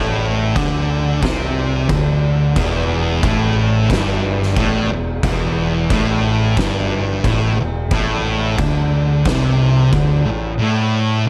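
Stoner and doom metal with an ominous, sludgy weight, this short cut from a longer piece moves at a steady, straight pulse over a chord pattern that shifts from Amadd11 to Em and back. Two thick fuzz guitars carry the low riff, one warm-toned and up front, the other darker and set back, while a round, overdriven fingered bass sits beneath them until 10.6 seconds. An oversized low-tuned acoustic drum kit enters at 0.6 seconds with a punchy kick, a fat snare and crash cymbal, saturated and close in a bright stone room, all within a moderate studio reverb.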